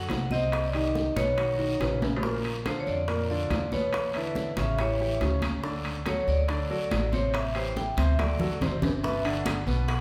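The vibraphone, played with medium hard mallets and its motor off, opens with a dark, smooth, ringing melody over a clear vintage concert grand with deep lows and a woody pizzicato upright bass with steel strings, all in a sophisticated, danceable Afro-Cuban jazz groove at 141 BPM in straight 4/4. Almost at once the percussion joins: bright, high-tuned congas, tight bongos struck with hard hands sitting in the background, a raspy guiro, and ringing, band-limited metal-shell timbales, with drum fills arriving at 2.0 s and from 8.2 s. The harmony moves through chords such as Cm, Bb, A7, D and Am7 before reaching Gmaj7, and the band, playing live in one room, is bathed in a large, wet studio reverb in this short excerpt cut from a longer piece.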